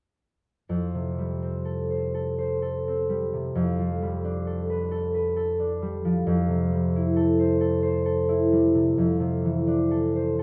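Classical solo concert harp in F major, luminous and dreamy, drifting at 44 BPM in a lilting 6/8 with a free, rubato feel. The harp plays from 0.7 to 10.4 seconds, its mellow, thumb-plucked tones ringing up front through a chord progression of Fadd9, G9/F, Fmaj9 and Dm9/F over a span from F2 to C5. Close, detailed miking captures the instrument inside a moderate recital-hall reverb, and the recording is cut from a longer piece.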